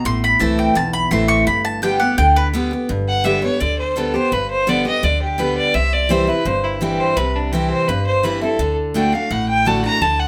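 Rustic and lively, this bluegrass excerpt in G major at 169 BPM opens with a bright, up-front picked mandolin carrying the melody until 2.5 s, a clear, intense bowed fiddle with light vibrato and a smooth top enters at 3.1 s for its solo, and a full-bodied picked dreadnought acoustic guitar and a thumpy, woody gut-string upright bass played pizzicato support throughout over Am, G, C and D chords in a moderate studio reverb.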